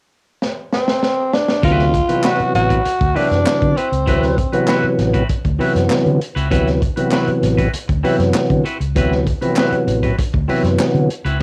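A growling tenor saxophone, breathy and raspy with subtone, vibrato and scooped notes, plays a jazz-style solo line up front from 0.7 to 4.7 seconds in this playful, strutting funk clip, cut from a longer piece, at 98 BPM in a straight 4/4 in D mixolydian. Underneath, a crunchy breakbeat drum kit with a high-tuned snare, punchy kick and hi-hat sounds dark and rolled-off in a small room, opening with a fill before the full groove arrives at 1.6 seconds on a D13 chord. From there a round, foam-muted fingered electric bass holds the low end, while a fat tonewheel organ with key click and slow rotary speaker hits stabs up front. A clean, scooped, twangy electric guitar adds accompaniment through phaser and plate reverb, and crisp group handclaps sit close and dry in the mix. The saxophone, drums, guitar and organ carry a cassette-tape character, giving the light-reverb home recording a vintage feel.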